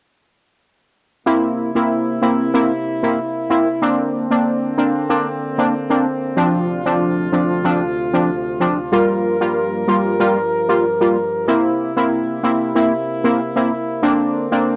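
A punchy, nasal synth brass stab with a detuned, wave-folded bite and a chorus sheen sits up front in this hypnotic, bouncy dancehall clip, playing accompaniment from 1.3 to 14.8 seconds. Alongside it, equally up front, a mellow brass ensemble holds classical-style sustained chords with light vibrato over a looping C7, Bbadd9, Dm7 and Gm7 progression. The home cassette recording lends a lo-fi character, with moderate spring reverb and small room ambience.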